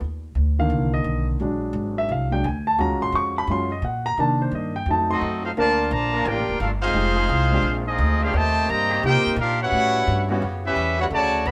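Swinging and energetic, this big band swing passage opens with a polished, intimate concert grand piano solo, its action noise audible, over a woody, thumpy upright bass played pizzicato. At 5.1 seconds a tight, up-front trumpet section takes the melody while a distant, roomy trombone section adds a second line. From 6.1 seconds a bright, soft-attacked trombone section holds chords in the background, with the band playing live together in one room with moderate reverb.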